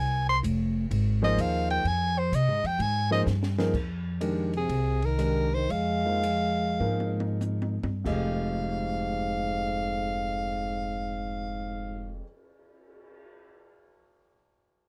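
A clear, breathy soprano saxophone opens this cool, searching modal jazz excerpt up front over pizzicato upright bass with a woody tone, as a compact cocktail kit with dark cymbals, a punchy kick and a high-tuned snare joins in a swung 4/4 and a concert grand adds deep-bottomed chords from 1.2 s. The pulse slows through the middle stretch, which drum fills help to mark, and at 4.6 s a distant, whispered trombone with a soft attack and light vibrato enters as a second line. The mix is dark and warm, with little reverb.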